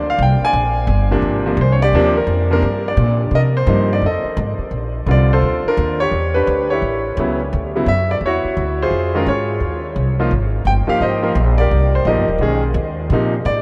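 A bright concert grand piano and a pizzicato upright bass begin together at the very start, setting a sophisticated, warm jazz piano trio mood at a brisk 172 BPM in 4/4 with a gentle swing on the eighths. The piano carries the melody in Bb major with a brilliant, smooth, vintage tone and a deep bass register. Beneath it, the upright bass supplies the low line with a woody, thumpy gut-string sound, and both sit up front. The harmony moves through rich colours such as Bb13, Ebmaj7 and F7#9, then shifts at 4.7 seconds into a new passage that wanders through Em7, A7 and Dmaj9 before touching Abmaj7 and Badd9 and settling on Bbmaj9. The whole trio is bathed in a huge, wet reverb that places it in a vast, echoing space, and this short cut from a longer piece runs to 13.6 seconds.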